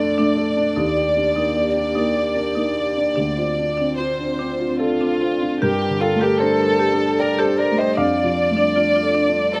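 A fragile, longing neoclassical piece in a rubato 3/4 at 76 BPM opens with an intimate, softly bowed violin section carrying the melody over a dark, mellow grand piano with deep bass, while a warbling, nostalgic tape-like pad sustains chords very quietly, bright woody marimba arpeggios sit in the background, and light reverb colours the D phrygian harmony as it moves from Ebmaj7 through Dm7 to Gmadd9 at 5.6 seconds before settling back on Dm/F at 8.0 seconds.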